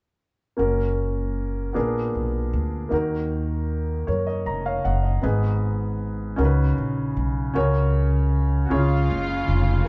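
Opening at 0.6 s with a woody, long-sustaining upright piano and a thumpy, gut-strung pizzicato upright bass up front, this soulful, uplifting gospel excerpt in F# major rolls along in a slow 6/8 at 52 BPM through chords such as F#, A#7b9, D#m and C#9sus4, with a piano fill at 4.1 s before a breathy, subtone alto saxophone with jazz-style vibrato enters at 8.6 s and a lush, distant bowed string section joins at 8.7 s to carry the melody, all set in a moderate large-room reverb with the mellow sound of a band playing live together.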